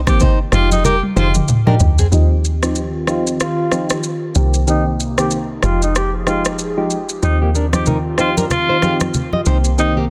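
A breathy, whispered alto saxophone carries the melody, present and intimate, in this breezy, joyful afrobeats excerpt. Its bright pop-style line has a light vibrato and is softened by a low-pass filter and tape echo. Beneath it, a deep log drum bass sounds round, dark and percussive, while an electronic afro-pop drum kit with a deep kick, rim click, shaker and toms sets a swung groove, its snare gently clipped. Mellow electric-piano-like synth keys glow through chorus and phaser, with a filter sweep running from 2.1 seconds onward, and an airy, detuned pad slips into the background at the same moment with sustained chords moving through Cm7, Fm9 and Eb69. Dark, fingerpicked flamenco guitar and close, dry congas color the opening, then both return near the end, the guitar reappearing at 7.4 seconds, all within a dense, heavily limited master set in studio reverb.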